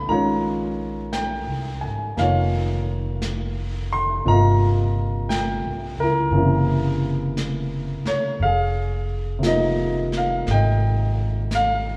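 A slow swung 4/4 at 58 BPM sets a melancholic, intimate jazz ballad in F minor, tuned to A4 = 445 Hz. The upright bass plays pizzicato from the very start, its steel strings giving a woody, growly low line. A vintage brush drum kit joins at 0.1 s on brushed snare and hi-hat, sitting far back in the balance with a muffled, gritty, lo-fi character and a rolled-off top, as if heard in a small room. Up front, a warm baby grand piano carries the accompaniment with a natural tone, moving through Bbm9, Gm7b5 and Gb7#11 before settling on Fm7 at 8.4 s. A moderate plate reverb soaks the mix in a dreamy haze, and the passage, cut from a longer piece, runs for 12.0 s.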